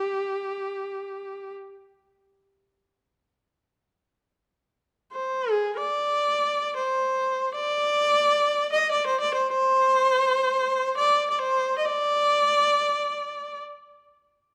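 A single bowed viola, rich and boxy in tone with an even vibrato, plays alone and up front in this calm, austere fragment of Japanese traditional chamber music. It moves in free time through a span from G4 to Eb5, its smooth line repeating the same opening material after about 4.0 seconds. A moderate recital hall reverb surrounds the instrument until it stops at 13.6 seconds, in this excerpt cut from a longer piece.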